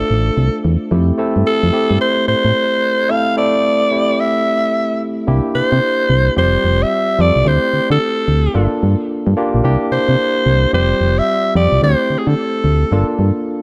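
A swung sixteenth-note groove at 110 BPM in 4/4 drives this confident, punchy new jack swing R&B excerpt, cut from a longer piece. Up front, a round, dark FM bass with a fast, decaying attack anchors the low end from F1 to D3 and sits loudest in the mix. A barky, clean tine electric piano supplies the chords, moving from Dm to a rootless Fmaj7 before turning at 5.3 seconds to a cycle of C7, Fsus2, D7sus4 and Gm7 that repeats. Over this, a breathy alto saxophone carries the melody between Ab4 and F5 with a bright, raspy, gritty pop-style tone, vibrato and scooped notes, stopping at 13.1 seconds. Light small-room reverb gives the mix a touch of space.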